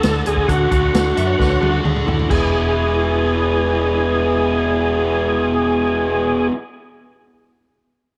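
Swaggering and sunny, this short classic rock fragment struts along at 132 BPM in a straight 4/4, rooted in E mixolydian. An overdriven tonewheel organ carries the melody up front, its gritty, thick tone turning through a slow rotary speaker with chorus vibrato, while a tight distorted guitar drives a bright, picked riff that spans from low E2 up to A4. Underneath, an overdriven picked electric bass holds the low end with a warm, amped tone, and a vintage drum kit with dark cymbals, a medium-tuned snare and a punchy kick plays through a fill from 1.4 to 2.3 seconds before dropping out at 2.4 seconds. An overdriven slide guitar enters at 1.2 seconds as a quieter second line in the background. The harmony moves from D to E at 2.3 seconds as the passage shifts into a new section, all set in a small room with a moderate plate reverb.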